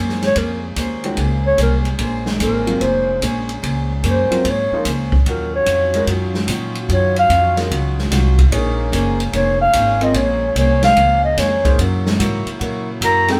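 A breathy, close-miked clarinet carries the melody up front with a dark subtone, light vibrato and a whispered, intimate tone, soloing through a sultry stretch of swinging big band jazz cut from a longer piece. Beneath it, a woody upright bass thumps out the low line with gut-string pizzicato, an open jazz drum kit adds dark cymbals and a boomy kick, and a boxy parlour acoustic guitar with old strings picks out accompaniment, joined at 1.0 s by a long-sustaining baby grand piano. A clear trombone section holds smooth sustained chords in the background over a Bbm9, Ebm9 and Gb7 progression, with the whole band sounding live together in one room with moderate reverb.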